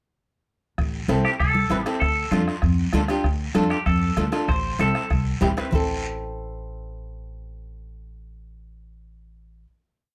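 Driving and fiery, this short cumbia in A minor moves at a brisk 194 BPM in a straight four, built from one compact section that moves from Am to Dm and back to Am before settling on a final chord from 5.7 seconds. A woody pizzicato upright bass with steel strings sits up front with a cumbia bass figure, joined by a soft-beatered bombo playing kick and rim, a raspy, vintage guiro scraping long and short strokes, and bright, damped congas with thin skins set back in the background playing off-beat high and low hand-drum parts. An acoustic flamenco guitar, fingerpicked and up front, supplies rhythmic triad chords, while a twangy, picked clean electric guitar bathed in spring reverb carries a motif-based melody of song-like phrases until about 5.1 seconds. The percussion drops out at 5.8 seconds, leaving the bass and flamenco guitar to ring out the closing chord. The whole recording sits in a light reverb, with the guitars and bass up front and present against the drier, subdued hand drums.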